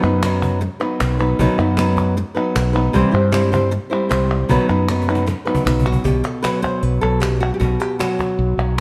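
A bright, fingerpicked acoustic flamenco guitar leads up front, carrying the melody from B2 up to C5 with audible finger squeak. This intense, passionate flamenco excerpt moves at 154 BPM in a straight 4/4 in B phrygian dominant, its harmony shifting from B to C and back to B before settling on B5. A dark, round fretless electric bass sits up front and direct beneath the guitar. A snappy cajon with snares sits in the background with a live-room sound, and crisp, close, dry palmas hand claps add to the pulse. A cajon fill from 4.9 s leads into a new section at 6.0 s, and the clip ends at 8.8 s, cut from a longer piece, all within a moderate stone-room reverb.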